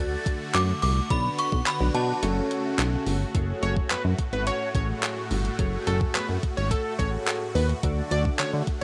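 This confident, driving dance-pop excerpt opens with an inharmonic, FM-style synth chime ringing high above a chorused polysynth, a huge detuned supersaw chord bed and a glossy pulse-width synth bass, all of which except the chime breathe with sidechain pumping. The chime, treated with ensemble chorus, phaser and slapback echo, carries the melody until 3.0 seconds, while a clean 12-bit drum machine brings in a thumpy, overdriven kick, handclaps and hi-hat just after the start. The kick briefly drops out as the opening passage turns, then returns for the second section, where the harmony settles on a lingering F#madd9. At 3.6 seconds a punchy, catchy unison lead with a noise layer and sub octave takes over the melody up front, echoed with slapback delay. Beneath it the dark, full-bodied polysynth and the lush, phased supersaw keep the texture dense. The mix stays dry and close, with little reverb.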